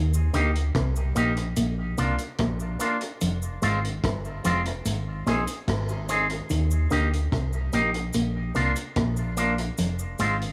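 Laid-back and uplifting, this roots reggae excerpt at 73 BPM in Eb major moves through Eb, Bb, Fm and Ab as a dark, compressed semi-hollow guitar riff and a deep, round sine sub bass hold the low end, a clean picked guitar through an envelope filter and tape echo rides up front, a vintage drum kit with a punchy kick, rolled-off top and its own tape echo plays hi-hat and rim click, and a close, dry cabasa adds texture in a small, lightly reverberant room.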